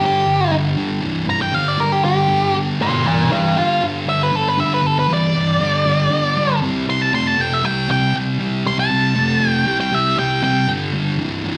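Gritty and swaggering, this straight-feel rock cut at 118 BPM puts a dark, octave-fuzz lead guitar solo up front over a bright, double-tracked fuzz guitar riff, both distorted with slapback echo, moving through G5 and C5 power chords in a live club setting heard through the venue's PA with light reverb, the lead dropping out at 10.7 seconds while the riff carries on to 11.6.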